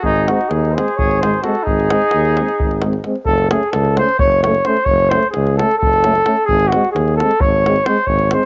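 A distant, roomy flugelhorn with light vibrato carries the melody up front, with a trumpet second line that stops at 3.0 s, a warm tuba bass, and a tight, close, dry davul, all in a restless, virtuosic Balkan brass band fragment in 7/8 at 262 BPM counted in eighths, as a soft-edged trombone and a punchy euphonium enter at 0.3 s in the background over G#, F#m and G# chords, with cassette-tape colouring on all the brass except the tuba and moderate spring reverb on a home recording cut from a longer piece.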